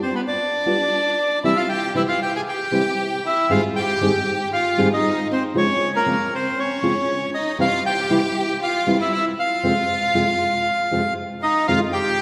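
Melancholic and tense, this brief tango fragment in F minor moves at 117 BPM in 4/4 with a rubato feel, cut from a longer piece. A reedy, airy bandoneon carries the melody up front, its bright tone sitting over a clear, focused violin section that plays a bowed second line with vibrato and a close studio presence. Entering at 0.7 seconds, a dark, full-bodied nylon-string guitar supplies thumb-plucked accompaniment, also up front, with audible finger squeak and a deep classical character. The harmony travels from G7 through C, Abmaj7 and Dbmaj7, returns to C, and then settles on Fm and Fm7 near the close. A wet concert hall reverb lends the recording the spacious air of a church or concert hall.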